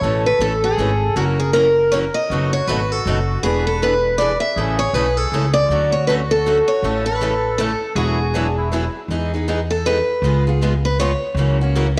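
A lead steel-string acoustic guitar, boxy and up front, carries the melody from the start over a reedy, sweet accordion second line, two picked guitars comping behind and a woody, thumpy upright bass, all in a playful, lively gypsy-jazz swing at 159 BPM in 3/4 and A major. The accordion has a vintage, band-limited character with light tremolo tuning and drops out at 8.9 seconds, while the second steel-string guitar adds bright comping and the old ladder-braced guitar sits in the background. At 9.1 seconds the lead guitar takes a solo through to the end of this excerpt, with a moderate echo-chamber reverb giving the group a roomy sheen.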